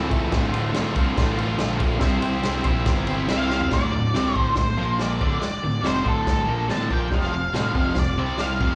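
An octave-fuzz lead guitar sits up front, entering at 3.3 seconds with a distorted, picked melody between A4 and A5, touched by slapback echo. It rides over a gritty, menacing garage rock groove in D minor at 141 BPM in a straight 4/4. Underneath, a bright, crunchy overdriven guitar, double-tracked and also up front, plays a picked riff with its own slapback echo, while a dark, round fingered electric bass growls with fuzzy overdrive. A vintage acoustic drum kit with a punchy kick, medium-tuned snare, toms, crash and ride has a natural studio-room tone and a rolled-off top, and it plays a fill at 3.5 seconds before the music moves into a new section at 3.7 seconds. The harmony shifts from Dm and C to power chords on D and Bb, returns to Dm, then moves to power chords on F and C, and the whole excerpt sounds like a live club gig caught through the venue's PA onto cassette tape, with light reverb and small-room ambience.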